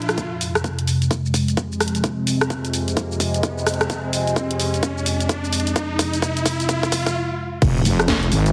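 Heavily compressed, radio-like sound with light reverb frames this swaggering, aggressive bass house cut in F minor at 129 BPM with a swung 16th feel, where a bright, wave-folded resonant pad sustains chords through chorus, phaser and sidechain pumping, a garage kit with a cracking, tape-warm snare, hi-hat, rim click, shaker and crash builds alongside a punchy, overdriven electronic kick and an electronic riser, a drum fill runs from 3.9 s, a brief stop hits at 7.2 s, and at 7.6 s a sub drop impact lands with a heavy, detuned sawtooth wobble bass, saturated and up front.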